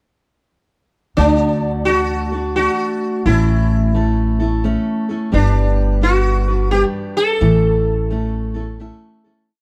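At 1.2 seconds, a buzzing, shimmering sitar, a full-bodied picked steel-string acoustic guitar and a woody, thumpy upright bass enter together on a short, easygoing honky-tonk and classic country interlude in D major, swinging at 87 BPM in 3/4. The sitar plays a motif-based, song-like melody up front over strummed eighths in open chord shapes, while the pizzicato gut-string bass holds down roots and fifths through a D, A, G, A progression. The production is dark and dry, and the whole piece fades out between 7.4 and 9.5 seconds.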